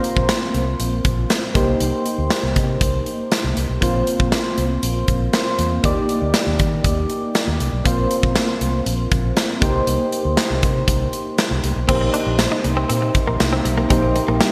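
A bright 1980s-style digital production, drenched in lush hall reverb, carries this romantic, nostalgic pop piece in a straight 4/4. Soft, round electric-piano-like synth keys with chorus and phaser sit up front, moving through gentle suspended and seventh chords. A big, punchy rock drum kit with gated reverb plays alongside them from the start, and a dark, foam-muted fingered bass given tube saturation enters a moment later. At 11.9 s a loose, mellow brass section enters in the background with sustained chords, alongside a clean, direct-recorded electric guitar riff touched with subtle chorus and digital delay.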